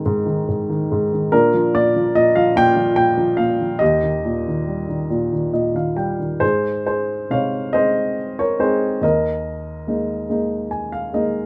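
A woody, up-front upright piano with short sustain plays alone in this calm, tender classical excerpt, a lyrical solo in 6/8 at 47 BPM in dotted quarters with gentle rubato, moving through Ab, Bb and Eb chords in Eb major before shifting to Ab major at 6.4 s and settling on an Ebsus4, with brief fills at 5.1 s and 10.3 s, spanning Eb2 to Ab5 in light reverb.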